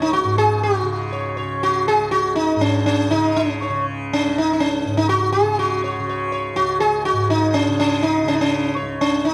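Devotional and meditative, this short Hindustani classical passage, cut from a longer performance, moves in a five-beat cycle and gradually speeds up. An up-front, plectrum-plucked sitar carries the melody with a bright, buzzing tone and shimmering sympathetic strings, while a softly plucked tanpura holds a low drone beneath it. Both sit in a moderate recital-hall reverb within a dark, warm production.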